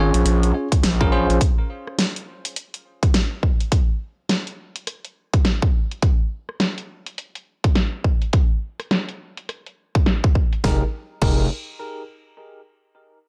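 Glitch hop with a gritty, swaggering strut and a swung groove, cut from a longer piece and mixed fairly dry. A bell-like tine electric piano, roughened by vintage sampler grit, sidechain pumping and tape echo, hits short stabs while a distorted, aggressive synth bass growls beneath. The pair open together, drop away after 1.4 seconds, and return at 10.6 seconds on an Fm11 chord. A dubstep drum kit with a huge snare and metallic, filtered hats runs through a filter sweep for most of the piece, and a punchy electronic kick sits up front from 0.7 seconds.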